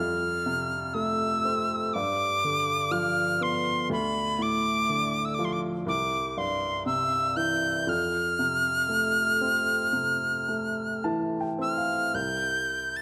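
A moderate concert hall reverb surrounds this short section of a Celtic slow air, lending the close, up-front instruments a sense of space. The mood is pastoral and nostalgic, moving in a free, rubato 4/4 at roughly 53-62 BPM. A bright metal whistle carries the melody high in its range, its airy tone marked by chiff on tongued notes, expressive vibrato and lifted highs. Beneath it, a woody upright piano supplies the accompaniment with natural, long-sustained chords moving from F through G7, Dm and C to Fmaj7. The piano steps forward with a fill from 10.5 to 12.1 seconds, and the harmony settles on C5 at 12.1 seconds before the excerpt ends at 13.0 seconds.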